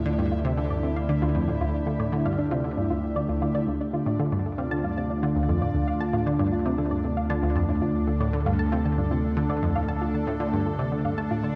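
A bright, detuned analog pluck sits up front with a low repeating riff trailed by delay, driving this hypnotic, mysterious stretch of sequencer-led space music cut from a longer piece. A resonant sawtooth pad holds sustained chords with a moving notch in its filter, an evolving pulse-width drone anchors the bass, and a soft, round pluck spins gentle arpeggios through shimmer reverb in the background. A bubbling texture of random filter steps fades in underneath, and the echo-heavy mix is soaked in wet spring reverb.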